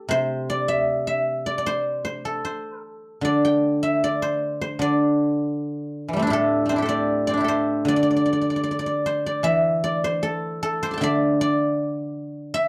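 A solo guzheng, played with fingerpicks and placed up front, carries this flowing, pastoral piece of Chinese traditional music, its silvery, ringing tone spanning A2 to D6. The performance moves in a free, rubato 2/4, and the music turns to a new section at 9.5 seconds before this short fragment of a longer piece ends at 12.7 seconds. A moderate studio reverb and a dark production surround the instrument's acoustic voice.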